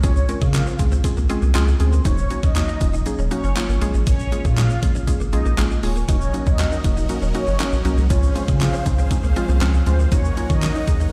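This energetic, driving dance-pop cut at 119 BPM in Eb dorian opens with nearly everything at once: an up-front, overdriven pop kit with knocking kick, fat snare, hi-hat and handclaps, a deep, round sine sub bass pumping under the sidechain, a woody FM mallet-like pluck with chorus, and a clean, direct-recorded electric guitar riff tucked in the background. Above them a soft-attack filtered supersaw swell carries the melody through tape echo, while a grainy, bright tube shaker sits far back, and the chords move through Dbmaj7, Ebm7 and Bbm7. At 6.1 s huge, lush detuned supersaw chords join in, also pumping, thickening the mostly dry mix through to the end of the 11.1-second excerpt.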